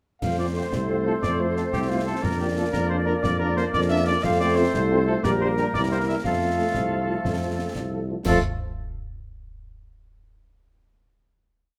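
A straight 6/8 lilt at 120 beats per minute, counted in dotted quarters, drives this short, complete military-style march for wind band in F major, rousing and festive in mood. From 0.2 seconds a solo cornet carries the melody with light vibrato, sounding distant and roomy, while a smooth-topped woodwind section holds a sustained second line beneath it and a bright, close-miked trombone section sustains chords in the background. Up front, a mellow tuba plants the bass on the beats, and a tight French horn section joins at 0.4 seconds with after-beat chords in a warm classical style. The percussion of concert snare drum, clash cymbals and concert bass drum is close and dry, with a marching snare over a bass drum on the beat and bright cymbals on top. The harmony moves from F through Bb/F and back to F, then through Gm/Bb and C7 home to F, and a moderate studio reverb surrounds the ensemble until the final chord arrives at 8.3 seconds.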